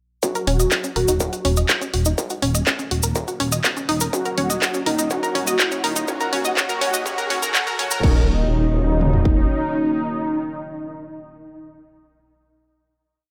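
Melodic techno at 123 BPM in Eb minor, this short, complete piece feels driving and melancholic, built on a single Ebm7 chord. A four-on-the-floor kick, distorted and re-recorded in a large room with toms, runs alongside a tape-warm analog drum machine supplying closed and half-open hats, claps and a crash, while a grainy acoustic cabasa adds hand-played sixteenths until 8.0 seconds. Underneath, a menacing detuned saw bass plays an off-beat line from Eb1 to Eb2, saturated and pumping against the kick. A round, bright analog pluck spins a 32-step arpeggio through chorus, cassette tape and delay, and a fat detuned lead with a sub octave and vibrato repeats a riff between Eb4 and Gb4, coloured by ensemble chorus and tape echo. Both synths take filter sweeps across the build from 0.2 to 8.0 seconds, a moody full-bodied pad rises in the background from 2.8 seconds, and a very quiet riser and impact mark the transition before the lead and pad hold a final chord to 11.8 seconds in light digital ambience.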